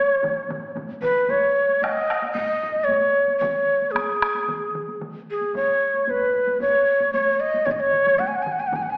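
A straight, driving 4/4 pulse from heavy-stick taiko carries this ceremonial Japanese traditional piece. Close, dry solo taiko drums play alongside several taiko ensembles in small and live rooms, some of them in the background, with one more ensemble joining in the background at 1.3 seconds. Over them an up-front, end-blown bamboo shakuhachi carries the melody across a range of G#4 to G#5, breathy and mellow with vibrato, a crisp chiffy attack and rolled-off highs, all set in a wet recital-hall reverb with a thin AM-radio character in this brief cut from a longer piece.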